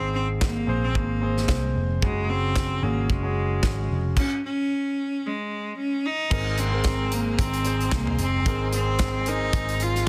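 A bowed cello carries the melody up front, its single voice clear, smooth and even with a gentle vibrato, over a piano-driven pop groove in Ab mixolydian at 112 BPM with a light 16th-note swing. A concert grand piano supplies the accompaniment, intimate and polished with deep bass, long sustain and audible action noise, moving from Abadd9 to Gbsus2. Beneath it a vintage picked electric bass sounds dark, round and foam-muted, while a modern acoustic drum kit enters at 0.4 seconds with a tight kick, medium-tuned snare, hi-hat, toms, handclaps and crash cymbal in a pumping studio room. The band halts for a stop from 4.2 to 6.3 seconds, and a studio string section joins in the background at 6.3 seconds with focused, sustained chords as the harmony returns to Abadd9. Dry, dense and heavily limited, this cut from a longer piece feels anthemic and hopeful.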